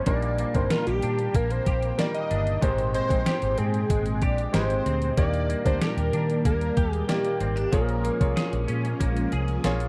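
Glossy and nostalgic, this short cut from a longer 1980s-style pop piece moves at a straight 94 BPM over Ebmaj7, Abmaj7 and Bbm7 chords. A thick, detuned sawtooth unison lead with vibrato carries the melody until 8.3 s, backed by a clear, polished concert grand piano and mellow, phased string-machine violas sitting in the background. A bright, twangy clean electric guitar riff with chorus and tape echo rides over a round, punchy, foam-muted fingered bass and an overdriven drum machine whose thumpy kick and gated-reverb snare sit up front in a dry, close 1970s-style studio sound.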